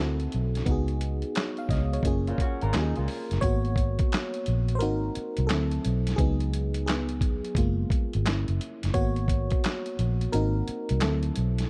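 Smooth and soulful, this short neo-soul R&B excerpt sways on a swung groove from a gritty, sampler-style drum kit with thumpy kick, handclaps and hi-hat, under a round, foam-muted electric bass and a glassy, bell-like FM electric piano with chorus that takes a solo from 3.4 seconds over rich ninth and suspended chords, while a twangy, slightly broken-up electric guitar adds a brief second line around 2.3 seconds, all set in a dark, warm digital ambience.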